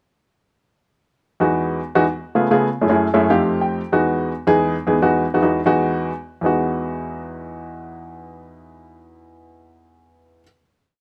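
A dark baby grand piano carries this short, lively jazz piece entirely on its own, entering at 1.4 seconds with a sunny spirit in a straight 4/4 feel. Its tone is mellow and intimate, with short sustain and audible action noise that keep the sound natural and up front. The playing is built on syncopated chord stabs in rootless voicings, moving through rich extended harmonies such as a major ninth, a dominant with a flat thirteenth and a minor ninth before settling back home. A brief fill at 3.0 seconds adds a flourish in the middle of the opening passage. The piece closes on a final chord from 6.4 seconds, all set in light reverb.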